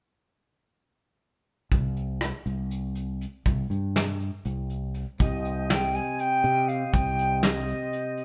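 This is a progressive instrumental in an uneven 7/8 meter, tense and intricate, taken from a longer piece and played by a band live together in a stone room with a moderate reverb. At 1.7 seconds the bass and drums open the opening section: a bright, punchy fretless electric bass sits up front, while a vintage kit played with brushes offers a medium-tuned snare, a tight kick, rim clicks and hi-hat, its top end rolled off and its small-room sound kept close. At 5.2 seconds a second section begins as a concert flute takes the melody in its upper register, pure and close-miked, with vibrato and tongued notes. Beneath it a soft, clean tonewheel organ adds a mellow, flute-like accompaniment, its key click audible and its tone turning through a slow rotary speaker. The bass drops out shortly before the end, leaving drums, flute and organ to carry the final moments.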